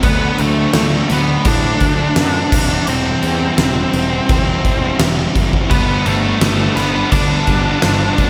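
A huge acoustic arena drum kit sits up front with a punchy kick, fat snare and crashing cymbals, driving this anthemic, restless slice of quiet-loud alternative rock at 85 BPM in G major. Over it, a dark, picked octave-fuzz lead guitar carries the melody through distortion and digital delay, while a thick fuzz guitar riff sits in the background and a fuzzed, overdriven picked bass holds the low end as the chords move from D to C/E to G. At 5.7 seconds a bright, scooped high-gain guitar joins the riffing with slapback echo, all set in a big arena sound with moderate scoring-stage reverb.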